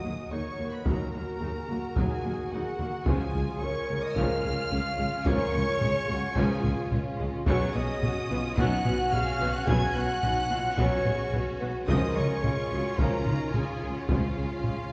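Compressed, saturated taiko drums struck with hard sticks drive this relentless, heroic epic orchestral film cue at 109 BPM, entering at 0.9 s just after a huge, dark, barely audible impact. A rich, focused violin section carries the lush high melody while a clear second violin line and an airy, very quiet flute ensemble trace supporting lines, over smooth violas, bright cellos and expressive double basses in the background. Tight French horns and a faint vintage trombone section sustain the Ebm, Db and Badd9 chords, close-miked trumpets punctuate with stabs, and a scoring-stage reverb places the whole orchestra further back in the room.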